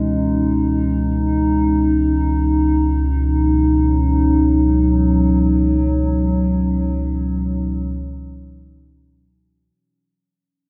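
Serene and spacious, this short ambient fragment in C# minor drifts in free time, cut from a longer piece. A warbly, tape-like pad holds a single C#m9 chord spanning B2 to D#4. Its dark, nostalgic lo-fi tone blends square and triangle waves, shaped by a slow attack, long release, chorus and its own built-in reverb. Beneath it, a round sine sub bass sustains a deep C#2, and both parts sit up front. Both fade in from 0.0 seconds, and a fade-out takes hold from 5.2 seconds to the close at 9.8 seconds. A wet, lush hall reverb with a long tail surrounds the whole recording.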